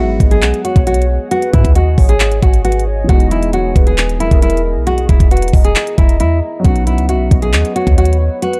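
Dark and hard-hitting, this short excerpt of half-time trap hip hop at 135 BPM in G# minor rides a knocking, up-front electronic drum kit with crisp hats and handclaps, over a deep, boomy 808-style sine bass that stops at 8.3 seconds. A full-bodied, fingerpicked nylon-string guitar carries the melody through a low-pass filter and tape echo, joined by a second line from a hollow, woody synth lead with chorus and vibrato, while a boxy concert grand piano accompanies over G#m7, Emaj7 and Badd9. A moody, detuned ambient pad enters at 0.3 seconds with chorus and reverb, sitting in the background of a dry, warm mix.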